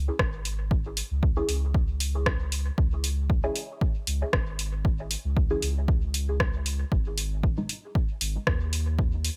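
Dub techno at 116 BPM in C# minor, this short excerpt from a longer piece has a cavernous, deep mood, with a light 16th-note swing and a harmony that rests on C#m before moving to G#m at 6.9 seconds. A soft, round sub bass built from triangle and square waves holds the low end with fast attack and sustained notes, colored by tube saturation and sidechain pumping. An electronic kick with a punchy analog character sits up front beside a tape-warm drum machine playing hi-hat and rim click. At 1.4 seconds a filtered chord stab enters, muted and mellow, made of detuned sawtooth and square waves with a sub octave and a short, plucked filter decay, its tone evolving through phaser, sidechain pumping and dub echo until it stops at 7.8 seconds. A digital ambience surrounds the mix, giving the groove a spacious, shadowy depth.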